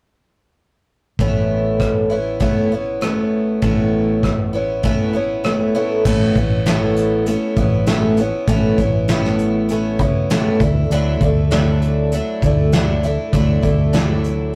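Warm and hopeful, this excerpt of folk and heartland rock moves at a straight 99 BPM in A major, with an up-front, shimmering, octave-doubled twelve-string acoustic guitar picking its accompaniment over a round, dark hollow-body electric bass and a soft brush kit with a punchy kick and rolled-off top, all entering at 1.2 seconds in a rough rehearsal-room recording with tube saturation and a moderate booth ambience as the harmony shifts from Aadd9 to Dadd9 at 10.6 seconds.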